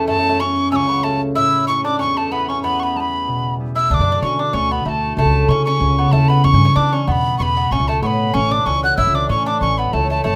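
A hollow, airy tin whistle carries the melody up front over a picked, metallic bouzouki second line and a ringing, fingerpicked concert harp in this driving, dark and lively Celtic reel at 189 BPM with a light swing, moving through F#m, A and Em chords in a moderate studio room, and a woody, thumpy pizzicato upright bass joins at 3.9 seconds.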